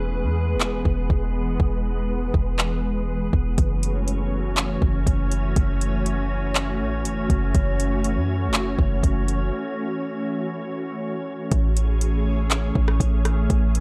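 Dreamy and blissful, this atmospheric cloud-rap excerpt moves at 121 BPM in a half-time 4/4 feel, cut from a longer piece. A glassy, ethereal FM pad holds sustained chords throughout, its slow attack and long release softened by ensemble chorus, built-in reverb and sidechain pumping. Underneath, a deep, boomy 808-style bass with a sine body, a noise layer and a fast, decaying attack sits up front alongside the pad. An electronic R&B drum kit enters at 0.6 seconds with a soft kick, metallic hi-hats, handclaps and rim clicks, its sound roughened by overdrive. The harmony rests on E before shifting to F#m7 at 3.6 seconds and settling on Amaj7 at 11.5 seconds, with break passages early on and again from 9.5 to 11.5 seconds. The production is dark and close, with little room sound.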